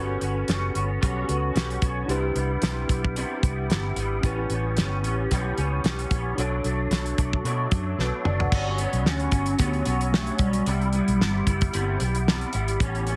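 A hazy, lonely bedroom-pop excerpt opens on a twangy, slightly broken-up electric guitar with ensemble chorus and warbly pitch drift, a mellow tine electric piano with a cassette-tape tint, and a dark, round, foam-muted fingered bass, joined at once by a dry, up-front 70s drum kit with a fat snare and tight kick over a lightly swung groove. A drum fill and a brief airy, ringing soft-mallet vibraphone line with lush chorus and digital delay arrive at 8.0 seconds, shortly before the electric piano drops out. From 9.1 seconds a detuned, nostalgic square-and-saw lead sings with vibrato, chorus and delay, all set in light reverb under a heavily compressed, radio-like sheen.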